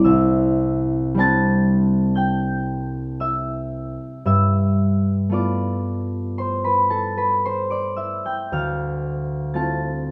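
Gentle and mysterious, this short excerpt from a longer classical piece features a solo concert harp played with a loose, rubato feel, its thumb-plucked strings ringing out across a span from A1 to A6. The harp sits up front with an acoustic, warm tone in a light reverb, moving from Cadd9 to G9 at 4.2 seconds and on to Dm7 at 8.5 seconds, tuned slightly low to A4 = 439 Hz.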